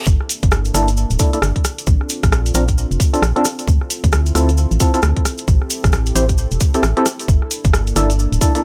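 A swung two-step garage groove at 133 BPM in G dorian sets a bouncy, soulful mood, with a tight, up-front electronic kick, a garage kit of bright hats and rim clicks, and grainy cabasa underpinning a dark, hollow FM bass with tube saturation and sidechain pumping, while percussive organ stabs, coloured by lush chorus, cassette tape and delay under a filter sweep, ride over a mellow, smooth analog pad in the background through chords moving from Gm69 to Bbmaj9, Dm7 and Am7 before returning to Gm69 in this short section cut from a longer piece.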